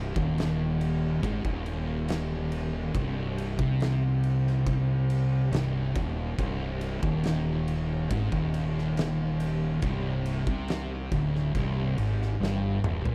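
Hypnotic and ominous, this short stoner and doom metal fragment sets two dark, picked fuzz guitars riffing in the background over a growly, punchy overdriven fingered bass, while an oversized low-tuned acoustic kit enters at 0.2 seconds with a boomy kick, fat snare, toms and dark ride cymbal in a big, pumping, gritty room sound, all in a dry mix until a drum fill at 12.4 seconds.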